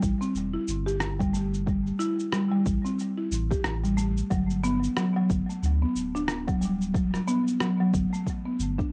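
A buzzing, woody marimba leads this hypnotic organic downtempo excerpt at 91 BPM, playing up-front arpeggios colored by cassette tape and analog delay over a round sine sub bass, a deep overdriven electronic kick and a gritty electronic cabasa and rim click, all in a loose 16th-note swing with light reverb and home-cassette character as the harmony moves from A7(no3) to Gmaj7(no3) at 4.3 seconds.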